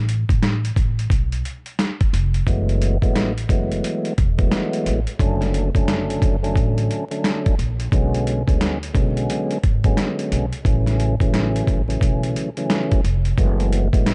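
Gritty, overdriven sampler-style drums with a thumpy kick and a medium-tuned snare sit up front in this dark, tough, swung boom-bap hip-hop excerpt, joined from the start by a woody pizzicato upright bass, while a fat, clean tonewheel organ with key click, vibrato and a slow rotary speaker enters at 2.5 seconds, set in a dry, warm mix laced with vinyl crackle.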